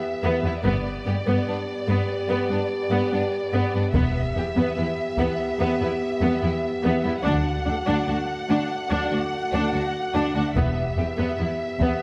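A dark, woody violin section carries the melody over mellow, smooth-topped French horn chords from the first moment, quickly joined by a focused second violin line in the background, distant violas, expressive cellos up front and a warm double bass foundation, all bowed with lush vibrato. This heroic, epic orchestral film cue builds throughout its short span, its strings and horns sitting in a moderate scoring-stage reverb as the harmony moves from E minor through G and D. Hard-stick taiko drums, compressed and saturated, strike from 3.9 to 5.6 seconds and return at 10.6 seconds before the excerpt is cut off.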